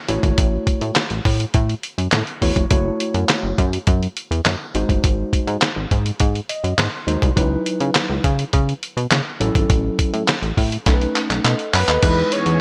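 A muffled, thumpy sampler-style drum kit with handclaps and crash drives this danceable, late-night early-eighties boogie funk excerpt alongside a glossy, chorused synth bass, clean tine electric piano chords that carry a mid-point fill, a drum fill from 10.9 seconds, a fat, detuned analog lead with vibrato entering at 11.7 seconds, and a swirling, phased string machine arriving in the background at 12.4 seconds, all set in a bright 1980s-style digital production with light reverb.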